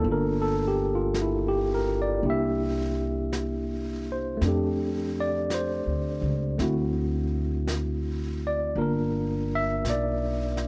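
A worn, slightly out-of-tune tine electric piano sits up front, its clean tone heard through built-in speakers as it comps through a Gm7, C7, F6, D7 progression in this late-night, tender jazz ballad at 55 BPM with a swung feel. A woody, pizzicato upright bass with steel strings plays close alongside it, while a jazz kit played with brushes on a medium-tuned snare and hi-hat adds an airy, polished touch from 0.1 seconds. The dry, close sound evokes a 1970s studio, and this short excerpt is cut from a longer piece.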